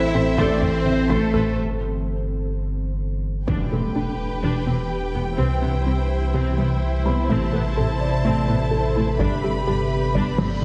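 This tense, futuristic hybrid orchestral and electronic film cue in A minor at 126 BPM opens on a brief Am chord from a clear violin melody, trombones, dark French horns and a mellow tuba, over a warm second violin line, rich violas, cellos and double basses, a woody wave-folded pluck playing arpeggios with chorus and delay, a pure sine sub bass up front, a vintage concert grand piano with delay, and an ethereal airy pad with built-in reverb. After a break at 1.6 s capped by a taiko fill, a huge impact lands at 3.5 s as the harmony moves through Em7, C, Am and G, the quiet taiko ensemble returns at 7.3 s, and a reverse cymbal closes this cut from a longer piece. It sits in a reverberant scoring stage yet is heavily compressed into a radio-like sound.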